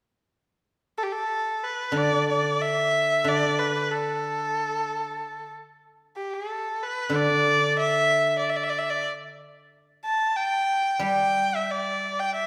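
The rhythm flows freely in rubato around a pulse of 92 BPM in 4/4, giving this festive, graceful Chinese traditional chamber piece a gently breathing feel in the D zhi mode, tuned to A4 = 441 Hz. A solo bowed erhu carries the melody from 1.0 s, its clear, smooth tone shaded with vibrato and portamento and held close and up front. At 1.9 s the guzheng joins in accompaniment, played with fingerpicks in a low register, its silvery strings ringing in the foreground beneath the erhu's line. The two instruments sit in a reverberant recital hall with a 1.6-second decay that lends the ensemble a spacious, church-like bloom. Cut from a longer piece, the recording stays within a single section until it breaks off at 12.5 s.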